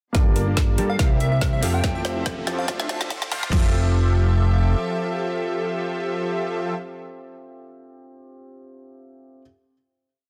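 A lush, playful future bass piece opens on a half-time build: an overdriven big-room dance kit brings a punchy kick and huge snare, and a trap kit adds a woody snare and metallic hat rolls. Beneath them sit a fat, saturated analog bass, filter-swept supersaw stabs with phaser and 12-bit grit, a dark baby grand piano, a quiet, tine-like thumb-piano-like pluck arpeggio and a floating bowed string section. A catchy plucky unison lead melody enters at 0.9 s and a faint riser joins at 1.7 s, before the drums fall away by 3.6 s and the piano, strings, supersaw and bass settle onto a final chord.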